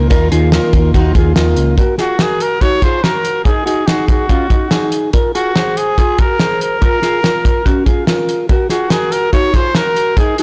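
Jangly indie pop with a wistful, restless mood, opening on a brief stretch where a shimmering, octave-doubled twelve-string acoustic guitar and a round, hollow-body fingered bass play beneath dark, clean electric guitar arpeggios colored by phaser, until both drop out at about 1.8 seconds. A cloth-damped, thuddy drum kit with a fat snare and tight kick sits up front throughout, and from 2.0 seconds a clear trumpet carries the melody with vibrato over chords moving from Ebm through Ab7sus4 and Fmadd11 to Bbm7. The mix has light reverb and small room ambience, but the recording itself is blown-out and overdriven, cut from a longer piece.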